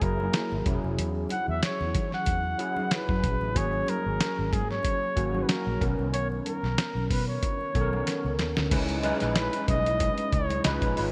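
A lightly swung sixteenth-note groove from a compressed, sampler-style drum kit with a thumpy kick and medium-tuned snare drives this slick, urban slice of polished 1980s jazz-funk pop, with a round, foam-muted electric bass underneath and very quiet, distant congas in the background. Up front, a breathy, intimate flugelhorn carries the melody with light vibrato and a soft attack over gritty, overdriven tine electric piano chords treated with ensemble chorus. The lush hall reverb and bright digital sheen suit the period, and a drum fill at 8.1 seconds leads into a new section at 8.7 seconds.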